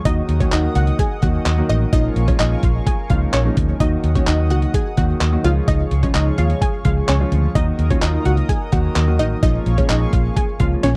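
Driving yet bittersweet, this 11-second dance-pop passage moves at 128 BPM in a straight 4/4, set in Eb minor and cycling through Ebm, Bbm7 and Db. A dusty, sampler-style soul drum kit sits up front with a thumpy kick, fat snare, hi-hat and handclaps, its overdriven grit sounding as if re-recorded in a small room. Beneath it, a vintage muted fingered electric bass gives a dark, round, punchy low end, while an intimate concert grand piano supplies accompaniment with audible action noise and deep bass. A shimmering, retro pulse-width pad holds chorused chords in the background, and a lush, detuned unison pluck carries the melody with a fast attack, a moving filter sweep and tape echo. The pad, pluck, piano and bass all pump against the sidechain, and the whole mix has the dry, close feel of a 1970s-style studio with little reverb.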